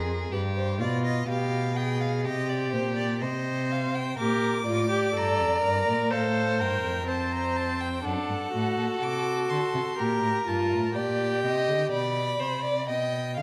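A wet recital-hall reverb surrounds this excerpt of a serious, driving baroque-style fugue for string quartet in straight 4/4 time, cut from a longer piece. A single violinist carries the melody with a rich, smooth, even bowed tone and vibrato, while a second violin plays a darker line beneath it, expressive and soft in attack, with portamento and vibrato. A cello holds the bass line, its warm, bowed sound sitting up front and coloured by vibrato and portamento slides. The viola joins at 4.2 seconds with an expressive accompaniment, also bowed with vibrato and portamento and placed up front, then stops at 11.9 seconds, where a brief new section begins. The harmony moves from G7 through Cm, Gm and Fadd9 to D7/F#, returns to Gm, and settles on G/B for the final bars.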